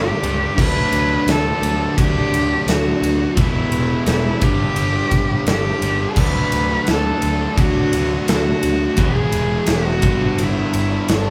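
A straight 4/4 pulse from a big, up-front rock drum kit with a punchy kick and bright cymbals, arriving at 0.2 seconds, drives this restless, cathartic alternative rock passage, where a warm, bowed cello sings an expressive melody with vibrato and portamento over growly picked electric bass and a bed of guitar riffs (one crunchy and double-tracked, one high-gain and distorted, one overdriven and very quiet), the band playing live together in one room with light reverb.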